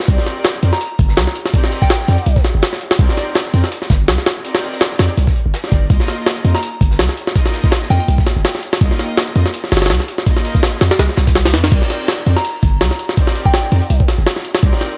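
Raw and atmospheric, this drum and bass excerpt in C minor runs at 165 BPM with a swung 16th feel, driven by a pitched-up, compressed sampler-style jungle kit with a thumpy kick and high-tuned snare, while a very quiet, dark, saturated breakbeat kit adds hi-hat and snare until 11.6 s. A deep, sine-like 808-style bass sits up front beneath a close, biting symphonic string section bowing sustained Cm7 and Ebsus2 chords with light vibrato. A soft FM synth bell drifts in the background in brief high phrases, starting at 0.7 s, colored by chorus, phaser and dub echo, all set in a small, dry room with vinyl crackle and a gritty hardware character.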